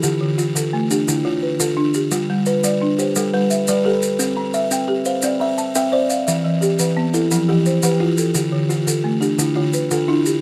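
A buzzing kalimba sits up front, its soft fingertip plucks ringing out in mellow arpeggios from D3 to E5 across this hypnotic fragment of a southern African traditional piece built on an mbira-style interlocking cycle. Beneath it, a folk marimba played with medium mallets adds arpeggios of its own, its hardwood bars sounding dry, rustic and slightly vintage as they reach from D3 up to A5. Maracas add a grainy, mellow, acoustic texture at a lower level, and all three parts play together for the full 10.4 seconds. The music moves at 116 BPM in 12/8 with a straight feel, tuned to A4 = 443 Hz, cycling through Dm, G, C and Em before returning to Dm at 8.4 seconds. Close, detailed microphones and light reverb give the recording an intimate, warm presence.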